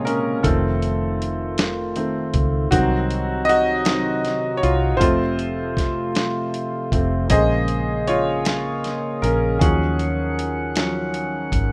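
Dramatic and aching, this six-eight pop ballad excerpt moves at a slow 52 BPM, with a clear concert grand piano carrying a solo throughout with deep bass and long sustain, up front over chords that pass from F7 through Cdim and F to Bbm7 and Ebm7. A fat, lightly overdriven tonewheel organ holds sustained chords with a percussive second-harmonic attack and subtle chorus, while a dark, foam-muted fingered electric bass adds a round, punchy low end. A gritty, compressed sampler-style soul drum kit with a thumpy kick, medium-tuned snare and hi-hat enters at 0.1 s, sitting up front in a rough home-demo mix with digital ambience.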